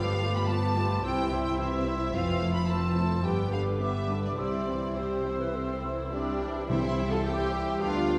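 Heard from further back in a wet scoring-stage reverb, this cheerful, lively classical passage in C major moves at 108 BPM in a straight 4/4, cut from a longer piece. Violins carry a smooth melody with light vibrato, while an airy close-miked flute, a mellow cor anglais, a soft-edged clarinet and a second, lush violin line add second lines around it, with a dark viola section adding portamento in the background. A rich double bass section sits up front beneath the cellos, and at 6.7 seconds a distant horn section and a tight trombone section enter with sustained chords as timpani with hard mallets strike briefly, just after the flute drops out at 6.4 seconds.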